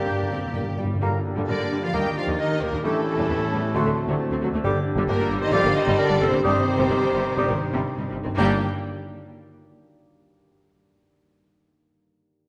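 A wet scoring-stage reverb surrounds this stormy, dramatic classical excerpt in G minor, which moves in a rubato 4/4 between 116 and 137 BPM and slows from 3.7 to 8.4 seconds. Soft-mallet timpani with a round, calf-head tone open with a fill in the first second, while lush, vibrato-rich violins carry the melody with a focused, smooth top and a second violin line sits very quietly close by with portamento and soft attacks. A distant, roomy clarinet weaves a second line, an airy tongued flute and a mellow oboe add second lines in the background, and bowed violas and a warm bassoon fill out the accompaniment. Mellow French horns and very quiet, tight, vintage-toned trombones hold sustained chords, intense cellos and focused double basses anchor the bass, and a ringing, fingerpicked harp plays arpeggios that carry on alone until 10.4 seconds. The harmony moves from Gm through Ebmaj7, A7 and D7 before returning to Gm by way of Cm/G.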